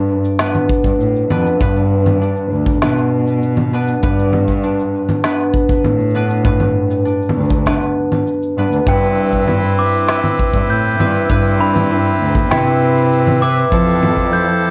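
In a moderate studio reverb, this delicate, hopeful folktronica fragment moves at 99 BPM in G mixolydian, with an up-front, ringing concert harp playing fingerpicked arpeggios through tape echo over a veiled, bowed muted cello bass with vibrato. An overdriven electronic cabasa, woody snare and congas, re-recorded in a large room, ride alongside a distant, punchy acoustic kick drum. At 8.9 seconds, as the harmony moves from G7 to Cmaj7 over G before reaching Fmaj7, a mellow, bell-like glockenspiel played with rubber mallets adds a close-miked second line through tape echo, while a reedy accordion holds sustained chords.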